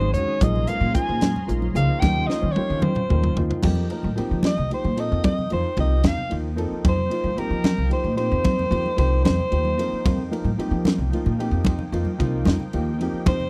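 A dry, close 1970s-style studio sound frames this funky, slick electric jazz fusion at 75 BPM in 6/8, where a punchy soprano saxophone with light vibrato and slapback echo takes a forceful solo from 3.6 seconds over dark grand piano, very quiet clean guitar stabs, a smooth detuned sawtooth pad with chorus and tremolo in the background, a woody pizzicato upright bass up front, soft-handed congas, and a tight funk drum kit with a high-tuned snare that plays a fill from 2.0 seconds.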